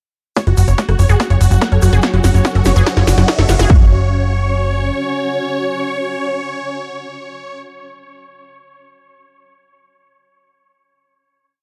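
A huge, thick supersaw leads this short psychedelic trance piece at 144 BPM, playing a repeating sixteenth-note riff over a pedal note with phaser, sidechain pumping and dub echo, while an overdriven four-on-the-floor kick, a punchy techno kit of hats, rim and snare, a rolling sixteenth-note analog bass, a background acid pluck line with digital delay and a grainy egg shaker drive a hypnotic build from 0.4 to 3.7 seconds. A swarming, tense drone and a riser sit behind the build, and a cloudy granular pad enters at 1.6 seconds with slowly shifting chords. After 3.7 seconds the drums drop away, and the supersaw and pad carry a final chord to the end while the bass lingers until 4.9 seconds, all in a dark production with light reverb and digital ambience.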